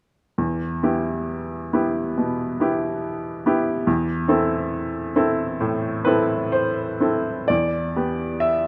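Played with a flexible rubato in 4/4 at roughly 60-72 BPM, this brief fragment of a longer romantic character piece in E minor has a bittersweet, brooding mood. A solo upright piano carries the whole passage from 0.4 to 8.7 s, spanning E2 to E5 with a woody, polished tone that sits up front in the mix. The harmony rests on E minor, moves to A minor over an E bass at 3.9 s, and returns to E minor at 7.5 s as a new section begins. A moderate recital-hall reverb with a 1.4 s decay gives the bright, present instrument a sense of space.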